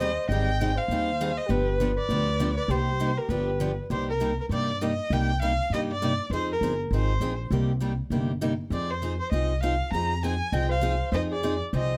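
This fragment sits in a light reverb, with a thumpy, woody upright bass placed up front. It is a fiery, virtuosic piece of acoustic string swing in the jazz manouche style, in 4/4 with swung eighth notes. A warm, bowed violin carries the melody throughout, singing with vibrato and portamento in an expressive voice. A picked steel-string acoustic guitar with a bright, boxy parlour tone supplies the accompaniment. A breathy soprano saxophone adds a mellow second line with scooped notes and a smooth top, its slapback echo heard from the start until 3.8 s and again from 10.5 s. Underneath, the bass plucks dark gut-string notes, while the harmony moves through seventh and ninth chords such as Cm9 and Fm9.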